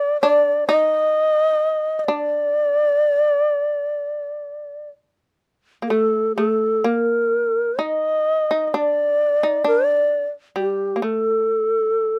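Austere and calm, this short cut from a longer piece of Japanese traditional chamber music drifts freely in rubato around 60-67 BPM in D miyako bushi, with a breathy, chiffy shakuhachi carrying the melody up front with mellow vibrato and softened highs, while a quieter shamisen, plectrum-plucked with a percussive, buzzing snap, supplies a lower second line throughout all 12.2 seconds; the music moves into a new section at 5.9 seconds, and the close, dry recording captures every detail.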